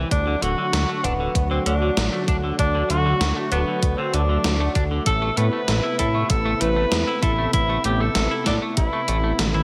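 Bathed in a lush hall reverb, this moody, nocturnal synthwave excerpt sets an up-front jazz-style tenor saxophone melody with vibrato over a thick, warbling detuned unison pad with 12-bit sampler grit and sidechain pumping, a fat, evolving sawtooth bass, a bright, twangy clean electric guitar riff with digital delay, a thumpy electronic kick, and a gated 80s drum machine with a gated-reverb snare, with a drum fill arriving at 9.4 seconds.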